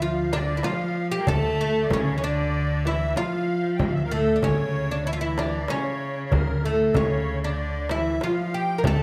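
A straight 4/4 pulse at 95 BPM carries this soulful, longing passage for an Arabic maqam ensemble in D maqam nahawand, cut from a longer piece. Up front, a fretless oud plucked with a plectrum sings the melody between A3 and Bb4, its double strings giving it a woody, warm voice. A reedy musette accordion with shimmering musette tuning plays a second line from A4 to A5, close-miked and full, with tape echo on its notes. A distant bowed cello adds a rich, focused second line of its own with vibrato. A pizzicato upright bass on gut strings holds D2 with a dark, thumpy sound, and from 0.3 s a clay-shell darbuka with natural skin and a deep, large frame drum struck with hard hands sit in the background, the frame drum set in a large room, all under a light reverb.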